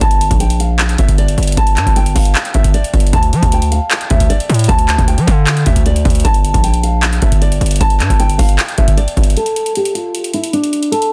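A distorted 808-style bass sits up front with a heavy, saturated tone, its sine core roughened by a noise layer, each note striking with a fast attack and then decaying as it anchors this brooding, dark trap excerpt in half-time. Above it, a thumb-plucked nylon-string guitar carries the melody in a classical style, its fresh strings sounding dark and softened through a low-pass filter, with a digital delay trailing its phrases. A booming analog drum machine, re-recorded in a large room, drives the track with a deep kick, metallic hi-hats and handclaps. The harmony moves from G minor to D minor and back to G minor. At 9.4 seconds the bass drops out and the chords stop, leaving guitar and drums for the closing moments. The mix is dense and heavily limited, with little reverb.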